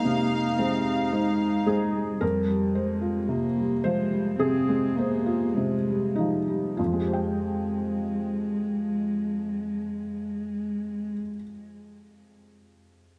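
Melancholic and fragile, this neoclassical piano and strings excerpt unfolds with a rubato feel, slowing through its opening 6.8 seconds as the harmony moves from Fm7 to Fmadd9. A felt-muted upright piano sits up front, mellow and intimate, carrying the accompaniment until 13.2 seconds, while a single dark cello, bowed sul tasto with vibrato and tape echo, sings a second line until 11.1 seconds. At the very start, a floating, pure violin section holds the melody beside a nasal, woody viola accompaniment, all captured by close, detailed microphones in light reverb.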